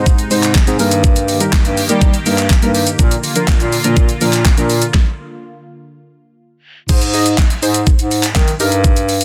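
A short excerpt of summery, euphoric dance-pop in a straight 4/4 at 123 BPM opens on deep, mellow chord stabs, a sweeping resonant pad and a vintage-toned bass clarinet, with a pop drum kit arriving at 0.1 seconds. The harmony moves from Ab to Eb over G and then to Bb. At 4.9 seconds the pad falls away and a stop lasts until 6.9 seconds, after which the Ab to Eb over G movement returns. The stabs are soft and full-bodied, with a filter sweep, fast attack, chorus and a dark tone. The pad is bright and evolving, with ring modulation, a filter swell, slow attack and long release, and both keyboard layers pump against the kick through sidechain compression. Up front, the bass clarinet carries the low end in a classical, solo style, while the electronic, layered drums bring a knocking kick, fat snare, hi-hat, shaker, handclaps and crash, all overdriven and re-recorded in a small room. The whole sits in a digital ambience with a dense, heavily limited modern master.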